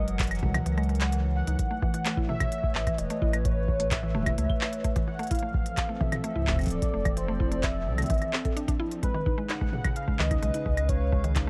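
Intricate and playful, this short IDM excerpt at 129 BPM pairs a velvety, detuned synth lead carrying the melody through chorus, phaser and delay with woody, mallet-like FM pluck arpeggios, a hollow, flute-like pad holding sustained chords over F#7, Aadd9, F6 and C#7, a round sine sub bass, crisp industrial hi-hats, claves, handclaps and toms, and a deep, tape-warmed electronic kick that drops out between 0.7 and 1.6 seconds, all bathed in a digital ambience with the warbling pitch drift of worn cassette tape.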